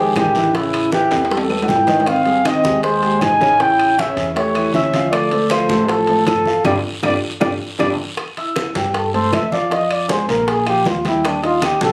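A brisk, straight 4/4 groove at 157 BPM drives this sunny, sophisticated excerpt of Afro-Cuban jazz, with low-tuned congas, tight bongos, ringing timbales, woody claves and a raspy guiro set behind a growly pizzicato upright bass and a mellow concert grand piano with a deep bass. Up front, a breathy, whispered trumpet carries the melody with vibrato, while a dark trombone adds a second line until 7.9 seconds, and drum fills and a band accent punctuate the opening passage. From 8.2 seconds the trumpet takes a solo over chords moving from Fmaj9 toward Ebmaj7, with light reverb and the studio ambience of a room recording.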